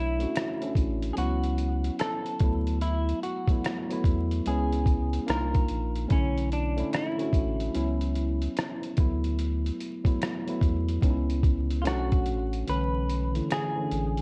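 Lo-fi hip hop in a hazy, reflective mood, cut from a longer piece, where a dark, clean semi-hollow electric guitar carries the fingered melody through analog delay over a worn, slightly out-of-tune tine electric piano with light overdrive, a deep, round sine sub bass, a muffled, pitched-down sampler-style drum kit of hi-hat, thumpy kick and rim click whose kick falls silent at 12.7 s, and a very quiet finger snap, set in light reverb with vinyl crackle and a warm production.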